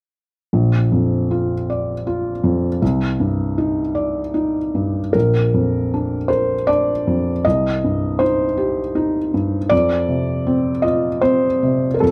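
A light reverb surrounds a close, intimate recording of a felt-muted upright piano, its soft, mellow tone sitting up front with the audible noise of the action clearly present. This neoclassical minimalist piano piece is tender and peaceful, moving in a gentle triple metre with a rubato feel that lets the phrasing breathe. The piano plays alone from 0.5 seconds to 12.1 seconds, reaching from deep bass notes up into the upper middle register. Its harmony settles on Bb and passes through Cmadd9, then returns to Bb before moving to Cm and resting on an open F5 chord. A new passage begins at 5.1 seconds, and the piece is heard as a short portion cut from a longer work, its natural, muted character keeping the mood hushed throughout.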